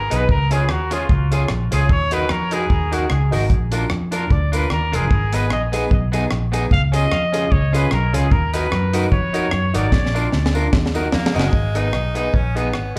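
A breathy, whispered trumpet solo with vibrato, tape echo and slapback opens this energetic, mischievous ska cut in Eb minor at 150 BPM with a light swing, over a round, foam-muted vintage electric bass sitting up front. A dry reggae kit with a high-tuned snare and tight kick, a twangy guitar at the edge of break-up, woody stabs from a dark upright piano and a jingly tambourine in the background fill out the groove through Db, Ebm, Bb and Abm, with a drum fill arriving at 9.9 seconds. At 11.1 seconds an edgy, forceful tenor saxophone with scooped notes takes up the melody, and the band is heard through a club PA with light reverb.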